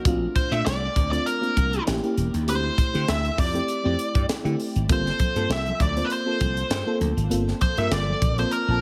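Polished 1980s jazz-funk pop with a nocturnal, bittersweet mood, this brief cut from a longer piece moves at an easy swung groove. A dreamy FM electric piano layered with a soft pad provides the accompaniment, its detuned, lush chorus and decaying notes drifting over chords that move from Bbmaj9 through A7b9 and D7sus4 to Gm11. Up front, a bright, punchy slap bass anchors the low end alongside a tight funk drum kit with a high-tuned snare and gated reverb. Entering at 0.4 seconds, a dark, nasal lead guitar with a parked wah carries the melody, its overdriven tone trailed by delay. Very quiet, low-tuned congas with a thick skin join at 4.9 seconds, adding a soft earthy layer to the otherwise dry, close-sounding mix.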